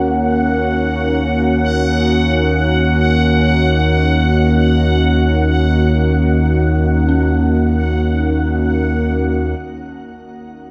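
A deep, rumbling, nasal drone with ring modulation fades in over the first 9.6 seconds of this ominous dark ambient excerpt, joined throughout by a bright, detuned sawtooth pad of sustained chords swelling through chorus and shimmer reverb, a bubbling texture of random resonant filter steps, and a very quiet, eerie, inharmonic synth bell tracing phased arpeggios, all set in an echo-heavy chamber with a faint mains hum.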